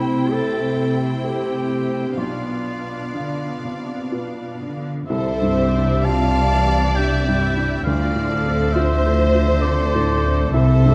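A dark production in a moderate scoring-stage reverb frames this moving, bittersweet fragment of a cinematic film score in a rubato 3/4. A felt-muted upright piano plays soft, intimate accompaniment beside a background viola section, a woody cello section on the bass and a lush violin section with vibrato, while a clear, distant solo clarinet carries a second line until 4.6 seconds. From 5.1 seconds another violin section takes the smooth melody, a mellow, roomy oboe adds a second line with light vibrato, and an up-front double bass section deepens the low end as the chords move from Cadd9 to Dm7.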